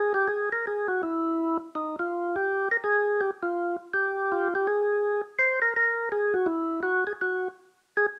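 A percussive tonewheel organ plays alone through a slow rotary speaker, its full, clean tone marked by second harmonic percussion and key click as it sits up front in a moderate studio reverb, carrying a greasy, bluesy jazz swing that settles into a new section at 4.7 seconds in this short cut from a longer piece.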